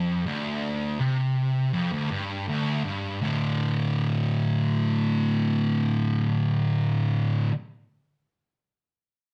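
Metal in D minor at 81 BPM in a straight 4/4, with a sludgy, ominous mood. An electric fuzz guitar plays up front, picked, distorted and double-tracked, working between D2 and D3 over a D minor chord before moving to a D5 power chord at 3.2 seconds. A moderate studio reverb gives the sense of a band playing live in one room, and the passage is cut from a longer piece.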